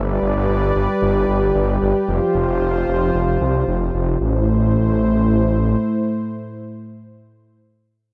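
In a straight 4/4 feel, this moody, cinematic synthwave fragment pairs a thick, saturated detuned saw bass, which stops at 5.8 seconds, with a smooth, mellow analog pad holding sustained chords until 7.6 seconds, both up front with chorus in a light reverb, as the harmony moves from G to Fsus2 and arrives on Am.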